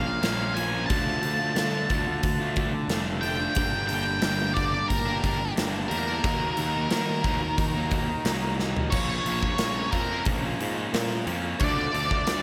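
A big arena sound bathed in lush hall reverb carries this cathartic, angsty quiet-loud alternative rock fragment, where a dark, distorted octave-fuzz lead guitar sits up front over an overdriven, picked riff from a cranked stack guitar with slapback echo, a growly fuzz picked electric bass, very quiet clean arpeggios from a mellow electric guitar, and a punchy big rock drum kit with bright cymbals that enters at 0.2 s and plays a fill from 8.6 s before the lead guitar breaks into a solo at 8.9 s.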